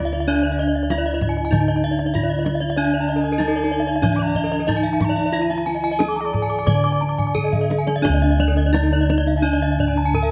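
A straight 4/4 pulse moving at 86-96 BPM carries this short, ceremonial Balinese gamelan passage in D pelog, tuned a little below standard pitch, and it sounds cut from a longer piece. A bronze metallophone leads the melody, struck with horn mallets and set close and dry at the front, its paired tuning producing shimmering beats on its ringing notes. Two more metallophones spin arpeggios above it, adding a bright, metallic glitter to the texture. Beneath them the bossed gongs give the bass a round, beating weight, while the kendang adds deep, hard-handed strokes and plays a fill from 7.2 to 8.0 seconds that ushers in a new section at 8.0 seconds. An alto recorder traces a second line higher up, airy and distant, with a chiffy, crisp attack and vibrato floating over the bronze. Close, detailed miking and a light reverb keep the sound clear and present.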